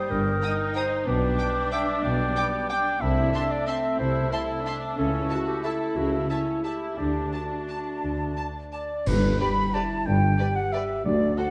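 Sweeping and elegant, this short passage, cut from a longer orchestral ballroom waltz in 3/4, moves with a rubato lilt. A hollow concert flute, a clarinet and an oboe weave second lines from the very start. A clear viola section supplies the accompaniment over bowed cello and double bass sections, the basses intense yet smooth on top. Two rich violin sections with vibrato, one carrying the melody and one a second line, sit distant in the background beside a French horn section holding sustained chords. The harmony passes from Eb/G through G/B, Am/C, A7/C# and D before resolving to G at 9.1 seconds, where a band accent brings in bright clash cymbals with concert bass drum, very quiet hard-mallet timpani and a mellow tuba. A scoring stage reverb lends the whole orchestra a spacious, wet bloom.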